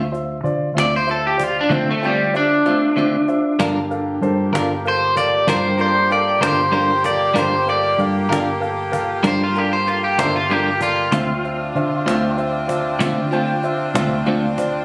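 A brooding, soulful slow blues in 12/8 at 64 BPM in D minor opens with a clean, compressed electric guitar with tremolo, a concert grand piano with deep bass and short sustain, and a dark, foam-muted fingered electric bass, along with a snappy cajon played with hard hands whose kick and snare drop out between 1.7 and 3.6 seconds. From 0.8 seconds a twangy, slightly broken-up electric guitar with subtle chorus carries the melody up front, and a bright, tight jazz-style horn section adds sustained chords with light vibrato from 3.6 seconds as the harmony moves from Dm7 to Gm7 and back. Captured on a phone in the room with light studio reverb, this passage is cut from a longer piece.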